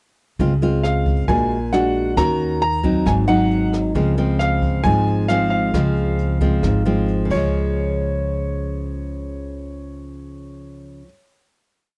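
A sunny, sophisticated bossa nova piece in Db major at 135 BPM, brief and complete, with a straight 4/4 feel and a dry sound carrying little reverb. Up front, a bright, fingerpicked nylon-string guitar with fresh strings plays classical-style bossa accompaniment, thumb bass under syncopated plucked chords, and its finger squeak is audible. A clear baby grand piano enters at 0.8 seconds with an intimate, motif-based melody built in period phrases, its action noise part of the natural sound. A woody pizzicato upright bass with steel strings holds a two-feel of roots and fifths, while a jazz brush kit sits distant and roomy in the background, with dark cymbals, a boomy kick, hi-hat and rim clicks in a soft bossa groove. The harmony moves through Dbmaj7, Bb7b13, Ebm7 and Ab7 before settling on Dbmaj7, and after the drums stop at 7.4 seconds the others close on a final hit on Db.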